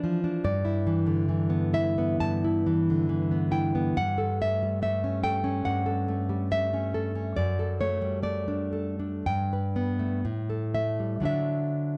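A fingerpicked nylon-string guitar plays alone through this nostalgic, romantic classical fragment, its full-bodied, fresh-stringed tone sitting up front in a dark, warm mix with a moderate recital-hall reverb, moving with a rubato 4/4 feel between 56 and 75 BPM through Em7/G, A7/G and D/F# before settling on D at 11.3 seconds.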